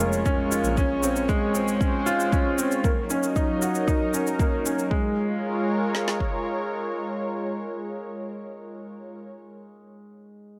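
Piano and strings electronica in Bb minor at 116 BPM, this moving, hypnotic excerpt moves through Bbm7, Dbmaj7 and Ebm7 as a clear, slightly detuned upright piano plays a riff with tape echo over a lush, warbling sawtooth pad that holds sustained chords with chorus and sidechain pumping. A bowed chamber double bass section, soft and intimate, sounds only until 0.7 s, while a layered shaker plays until 4.9 s and a deep house kit with a deep kick and woody snare sits up front until 6.3 s. The whole plays in a moderate concert hall reverb, with the piano ringing on alone until 10.6 s.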